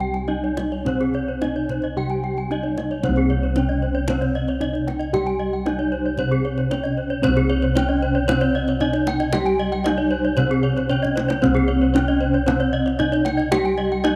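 Light reverb and a small-room ambience frame this hypnotic, shimmering Balinese gamelan excerpt at 114 BPM in C pelog, where a wooden-mallet bronze metallophone rings out the melody over dark, round bossed gongs carrying the bass up front, a mellow padded-mallet metallophone sits in the background with the accompaniment, and two horn-mallet metallophones spin arpeggios, one bright and airy, the other close-miked, dry and full, their paired tuning giving the bronze a beating glow, while a tight kendang played with hard hands adds percussion, the piece moves into a new section at 3.0 seconds and the drum adds a brief fill at 10.8 seconds.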